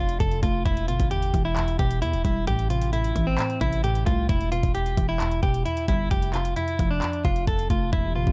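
A clean, direct-recorded electric guitar sits up front, carrying a compressed, picked melody with digital delay over a brooding, eerie half-time trap groove cut from a longer piece. A woody, round FM synth pluck with chorus adds mallet-like accompaniment, while a heavy, distorted 808-style bass sits beneath a trap kit of knocking kick, metallic hi-hats and handclaps roughened by 12-bit sampler grit, all moving through F, Em and Am. The dry, dark mix closes with a deep, detuned analog pad entering at 7.9 seconds as the hi-hats are muted.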